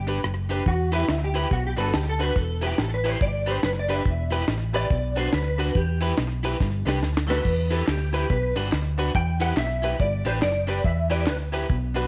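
A studio sound with light reverb frames this energetic, driving ska excerpt at 141 BPM in E minor, swung on the eighths and cycling through G, E minor and B minor with a brief pass through D. A mellow, dark electric guitar carries the melody as a clean, compressed, fingered solo thickened by ensemble chorus, running until 11.4 seconds. Up front, a round, amped hollow-body bass anchors the low end beside a deep reggae kit with a high-tuned snare, tight kick, rim clicks, hi-hat and crash, which drops in a fill from 6.6 to 7.4 seconds. A twangy, slightly broken-up guitar with slapback echo supplies the picked accompaniment, while a woody upright piano with long sustain adds stabs from the background. Crisp group handclaps slip in very quietly at 7.9 seconds.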